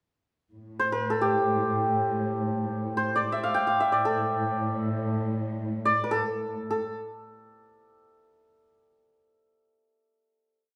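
Heard from further back in a reverberant studio, this complete Persian modal ensemble piece has a hypnotic, longing mood. A lush, dark symphonic cello section enters at 0.5 s with a bowed drone, its expressive vibrato and portamento giving the low foundation a smooth top. From 0.8 s, a shimmering hammered santur, ringing through plate reverb, traces an ornamented modal melody until a final note that lingers to 8.3 s.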